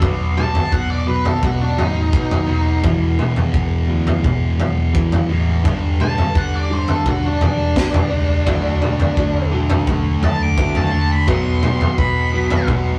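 A raw garage drum kit sits up front, its punchy kick, high-tuned snare and toms sounding gritty and saturated in a small, pumping room, driving this bittersweet, anthemic stretch of quiet-loud alternative rock cut from a longer piece. A dark octave-fuzz lead guitar carries the solo melody from 0.4 s over a thick, bright fuzz riff and a growling overdriven bass, while a slightly broken-up, compressed guitar through a small old amp plays arpeggios in the background, and a crunchy overdriven guitar with tremolo joins at 8.5 s. The chords move through B, E5, G5, D and B5, and the rough rehearsal-room recording carries tube saturation and moderate reverb.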